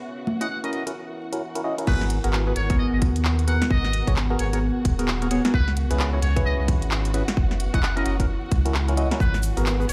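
A swung two-step garage groove at 131 BPM in G# minor carries this soulful, moody excerpt, where a dark violin section and a deep, full-bodied ambient pad pump softly in the background under a buzzy, vintage-toned muted trumpet melody with delay and hollow, chorused organ stabs with phaser. The garage kit's cracking snare, handclaps, hi-hat, congas and crash sit alongside the harmony until the drop at 1.9 seconds brings in a tight, tape-warm electronic kick and a round, up-front dub sub bass over G#m9, C#m7 and F#7 chords. A grainy egg shaker slips in at 9.2 seconds, and the whole mix sounds like a big sound system in a bare room, with large studio reverb and vinyl crackle.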